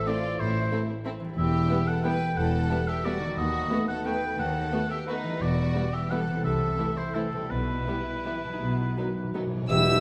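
This bittersweet, sweeping orchestral ballroom waltz in E minor opens with lush, vibrato-rich violins singing the melody over a distant second violin line, a warm oboe, mellow French horns holding sustained chords in the background and a bright, ringing harp spilling arpeggios, all moving in a rubato 3/4 at 154-195 BPM. Violas fill in the accompaniment while expressive cellos with portamento and focused double basses carry the bass, all wrapped in a wet recital hall reverb. Bright cymbals and tam-tam enter at 7.5 seconds, round soft-mallet timpani play a fill from 8.6 seconds, and the passage ends on a band accent at 9.7 seconds where a pure, hollow silver flute, a clear bassoon and a soft-attack trumpet stab briefly join in.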